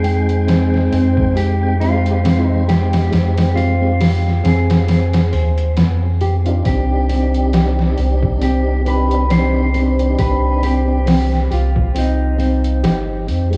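Melancholic and hypnotic, this trip hop excerpt drifts at 68 BPM in C harmonic minor with a lazy 16th-note swing, moving from Fm9 to Cmadd9 at 6.7 seconds. A dark, clean electric guitar carries the fingered melody through tape echo until 13.2 seconds, over a round tonewheel organ churning with fast rotary speaker, chorus vibrato, tremolo and key click, while a thumb-plucked nylon-string guitar spins arpeggios with finger squeak, 12-bit grit and diffuse ambient delay. Up front, a deep, soft dub sub bass and a gritty, pitched-down sampler kit with a thumpy kick, medium-tuned snare and hi-hat anchor a dreamy mix soaked in huge ambient reverb.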